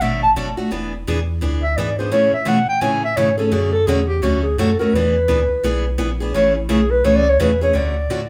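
A breathy, close-miked clarinet carries the melody with vibrato and an intimate, whispered tone, soloing throughout this short cut from a longer jazz manouche piece in A major at 171 BPM. Underneath, a bright picked steel-string acoustic guitar with audible finger squeak supplies the chords, moving from Bm7 and E7 through Amaj7 and Dmaj7, while a deep, clean sine sub bass sits smooth and dark at the bottom. The mood is charming and lively, with a swung feel and a wet club reverb that places the group further back in the room.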